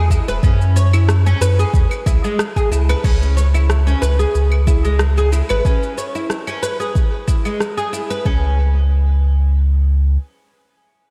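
Bathed in a dreamy, lush hall reverb, this short, mystical and earthy organic downtempo cut from a longer piece pairs woody, plectrum-plucked oud arpeggios trailing a diffuse ambient delay with a round, sine-like sub bass that pumps under sidechain, a deep, tape-toned electronic kick up front, and a subdued deep house kit of claves, crash cymbal, rim click and shaker, moving from F#sus2 to C#m before the drums and oud drop away between 8.2 and 8.6 seconds and the bass holds on alone until 10.2 seconds.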